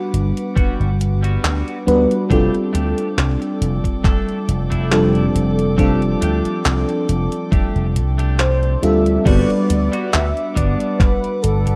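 Dreamy and woozy, this vaporwave fragment, cut from a longer piece, drifts at an unhurried pace with a lightly swung feel, settling on lush Gmaj7 and F69 harmonies. An FM electric piano with a soft pad layer sits up front, its mellow, decaying tones smeared by analog chorus and tape echo, while a bowed studio string section holds sustained chords far back in the mix, its reedy gut-string tone roughened by vintage 12-bit sampler grit. A punchy slap bass pushed through an envelope filter and tube saturation anchors the low end, joined by a thumpy, overdriven electronic kick from 0.6 seconds and a detuned 8-bit drum machine scattering crash cymbal, handclaps and hi-hat. A clean, twangy electric guitar picks a compressed riff, lightly chorused and echoed. At 8.4 seconds a velvety, detuned sawtooth synth lead enters with vibrato to carry the melody into the closing section, all wrapped in light reverb and a rough home-demo mix.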